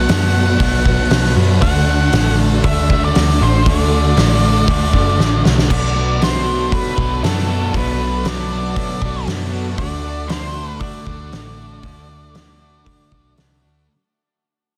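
A dense, heavily limited modern mix sits in a small room ambience, giving this hazy, blissful shoegaze and dream pop excerpt a thick, saturated wall of sound. At 118 BPM in a straight 4/4 and D major, the piece moves between Bm7 and D. Up front, a round, foam-muted vintage picked bass anchors the low end, while a loose indie drum kit with a fat snare, tight kick and dusky, rolled-off cymbals sounds roomy and distant despite its forward placement. Behind them, a thick fuzz guitar with lush chorus, a double-tracked overdriven guitar and a compressed, direct-recorded clean guitar with reverse reverb stack their riffs, and a swirling phased string machine holds bright, soft-attack chords with ensemble chorus. Over the top, an octave-fuzz lead guitar carries the melody through distortion and tape echo. A drum fill at 5.2 s leads into a fade-out that begins at 5.7 s, and the overdriven guitar stops at 9.8 s as the haze recedes.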